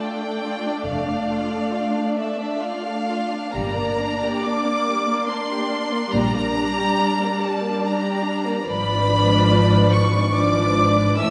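A rich, even violin section carries the melody up front, singing high in its register with vibrato in this solemn, yearning slow movement for string orchestra, cut from a longer piece. Beneath it, a second violin section plays a focused supporting line, while a lush, close-sounding viola section fills in the accompaniment, also placed near the listener. At 0.9 s the cellos and double basses enter together in the background to lay down the bass, the cellos smooth and the double basses warm and expressive. The music moves in triple metre with a free, rubato feel, its harmony darkening from D minor through G minor toward a tense diminished chord. A wet scoring-stage reverb places the ensemble further back in the room, giving the sound a soft, rounded top.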